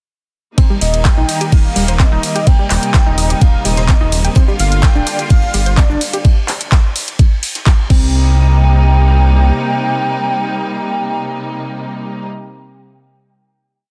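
An expansive, bittersweet progressive house piece opens straight into a dense drop at 0.6 s: a knocking four-on-the-floor electronic kick sits up front beside an overdriven house kit of claps, hats, ride and crash. Beneath them a dark brush kit loops in the background, while a tight sequenced synth repeats a 16-step filter-pluck arpeggio through chorus and tape echo and a clear symphonic string section holds smooth, bowed chords. Almost at once a round, deep analog bass enters with a dotted rhythm, the bass, strings, arpeggio and house-kit cymbals pump against the kick, and a velvety, detuned synth lead sings hook phrases with vibrato, chorus and echo. A grainy cabasa adds very quiet sixteenths from 4.4 s. After the drums drop away at 8.0 s the arpeggio soon fades and the bass holds on until 9.5 s, while the strings and lead ring on as a final hit in a dense, heavily limited mix with studio reverb.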